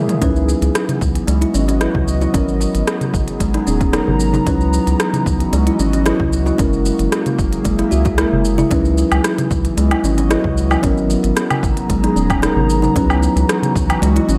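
A drum fill opens this organic downtempo excerpt at 0.0 seconds, as a mellow tine electric piano and an airy, breathy pad set a meditative, mystical mood in C# dorian at 113 BPM in a straight 4/4. The electric piano, clean and heard as if through built-in speakers, carries the accompaniment with digital delay and sidechain pumping. The detuned, nasal pad holds sustained chords under chorus, sidechain pumping and shimmer reverb. An organic electronic kit of crisp hats, rim click, shaker, toms and woodblock, re-recorded in a large room, comes in at 0.1 seconds. From 0.2 seconds, a woody, close-miked kalimba plays short, dry arpeggios with digital delay, and a round, deep analog bass sits up front with its own pumping. An overdriven, punchy electronic kick also joins there, and at 0.5 seconds a clay-shelled darbuka with natural skin adds acoustic percussion in the background. The harmony circles through C#m11, G#m9 and F#9 under light reverb and digital ambience.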